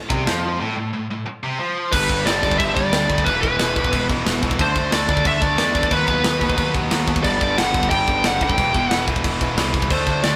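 A dark, high-gain lead guitar carries the melody from 1.9 seconds, its distorted, picked line sitting up front over an epic, heavy heavy-metal excerpt in E minor at 181 BPM, in a straight 4/4 with tuning at A4 = 439 Hz. Beneath it, a bright, double-tracked rhythm guitar drives the riff with high-gain distortion, joined by a punchy picked bass whose fuzz-laden overdrive adds weight at the bottom. An acoustic drum kit with crash cymbal, snare and kick sounds big and mid-forward, with a medium-tuned snare and a tight kick. The opening section shifts into a break from 0.6 seconds before the band pushes into the second section at 1.9 seconds. The harmony moves from Am through G, E5, D5, B/D#, G5 and Em, and the sound is of a band playing live in one room with a light touch of reverb.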